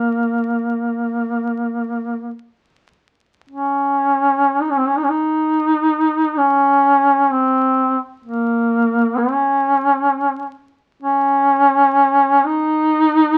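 Caucasian folk lament in free time and B-flat minor, mournful and solemn, in which a lone mellow duduk sits up front yet roomy and distant, its soft attacks, vibrato and scooped notes moving within a narrow span from Bb3 to Eb4, with a new passage beginning at 3.5 seconds, all heard through light reverb and the crackle of a very old 78 rpm record in this 13.4-second cut from a longer piece.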